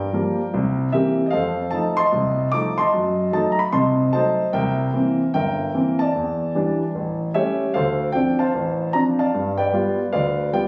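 Swung eighth notes in 4/4 drive this brief, sophisticated solo jazz piece, cut from a longer performance and moving at a brisk clip through a chord progression that opens on Gm7 and C7 and closes on Dm7 and G7. A concert grand piano plays alone throughout, sitting up front with a warm, natural tone and deep bass. Captured on a phone in the room, the sound carries a light club reverb and some compression.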